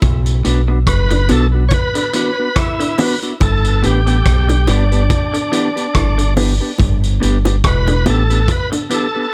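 Roots reggae with a laid-back, serious mood and a gentle sixteenth-note swing, cut from a longer piece, moving from Bm to G under light reverb. A deep, round dub bass sits up front with a vintage kit's punchy kick, hi-hat and rim click, while low-tuned bongos played with soft hands stay close and dry in the background. A dark, clean guitar with tape echo plays accompaniment, a twangy, lo-fi guitar through a small old amp picks arpeggios in the background, and from 0.9 seconds a bright, shouting tonewheel organ carries the melody, lightly overdriven through a fast rotary speaker and tape echo.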